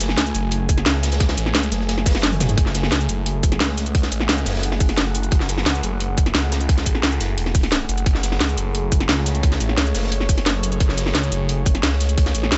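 A straight 4/4 groove at 175 BPM drives this aggressive, tense slice of dark technical drum and bass in F# minor, cut from a longer piece and opening on an F#madd9 chord. The up-front electronic drum and bass kit delivers a cracking snare, metallic hats, cabasa and toms, with a drum fill at 2.3 seconds. A tight, layered electronic kick enters at 0.7 seconds. Beneath it sits a very quiet acoustic breakbeat kit with a gritty, saturated, medium-tuned snare, hi-hat and a rolled-off top. A thick, swirling detuned sawtooth bass with a fast attack and phaser pumps against the sidechain in the low register, while a deep, moody ambient pad holds sustained chords with a slow attack, chorus, warbling vintage sampler grit and its own reverb. The overall mix is dry and close, with a dull top end.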